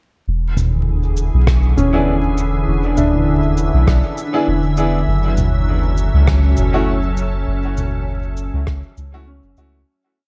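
A loose, lightly swung 100 BPM groove in 4/4 carries this meditative, spacious ambient dub piece in F# minor, where a round, up-front sub bass line and a sparse echoing beat of low toms, cabasa and rim from a soft-mallet kit, with a very quiet overdriven electronic kick, sit under a pure, organ-like pad of slowly shifting chords with ensemble chorus, while a felt-muted upright piano with audible action noise drifts two unequal arpeggio loops until 5.2 s and again from 9.3 s, and a brilliant, woody upright piano adds filtered, echoing chord stabs moved in parallel, all moving from E7 to F#m7 in an echo-heavy mix dusted with vinyl crackle before fading out from 6.7 s.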